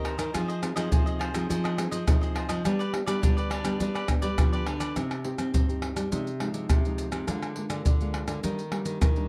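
Samba and choro at 104 BPM in C minor, this lively, nostalgic fragment sets a bright, crisply picked cavaquinho over a fingerpicked classical nylon-string guitar and a second nylon-string guitar, thumb-plucked and warm, carrying the bass line. Up front sits a percussion group of pandeiro, tamborim, maracas and a tight surdo played with hard hands and a live-room feel, while the cavaquinho drops out at 5.0 s as the harmony moves from Fm7 and G into a Cm, Fm7/C, Bb7/D, Ebmaj7 passage. The sound is close and detailed, with little reverb.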